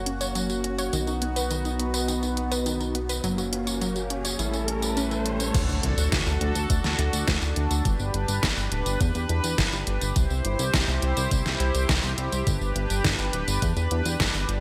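A shimmering chorused pulse-width pad holds sustained chords throughout this dreamy, uplifting synthwave excerpt at 104 BPM in 4/4, pumping against the beat, while a nasal, glossy chorused synth bass and an overdriven pop drum kit with a deep snare, hi-hat, tambourine and crash cymbal sit up front. A lush, detuned unison pluck spins arpeggios through digital delay in the opening until 5.5 s, as a background riser builds from 3.4 s into an impact that lands with a knocking, overdriven electronic kick drum and the arrival of G major. Bright 1980s-style digital production and a lush hall reverb give the whole a retro gleam.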